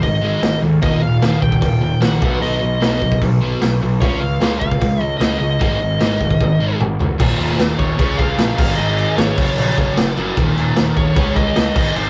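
A rough rehearsal-room recording with a short, wet booth ambience frames this energetic, swaggering hard rock excerpt in straight 4/4. Up front, a sludgy, double-tracked overdriven guitar drives the riff over a boomy, saturated garage drum kit with a pumping small-room sound, while a growly fuzz bass and a bright, high-gain lead guitar melody run throughout. A drum fill from 6.4 to 7.2 seconds leads into a second section that carries on to the end of the cut.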